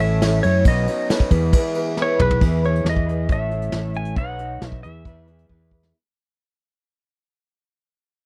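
A straight 4/4 pulse at 136 BPM drives this jangly folk rock and heartland rock fragment in E major, with soft brushed drums entering at 0.2 s beside a punchy fingered electric bass, both up front, over a cycle of A, Badd9 and E. A shimmering, octave-doubled twelve-string acoustic guitar with audible finger squeak and a slightly broken-up, twangy electric guitar riff through a small old amp fill out the accompaniment, while a clean, compressed lap steel carries the slide melody and a reedy, breathing pedal harmonium holds very quiet chords until 2.4 s. The dry, close 1970s-style studio sound feels warm as the music fades out from 2.4 s, with a drum fill closing each section.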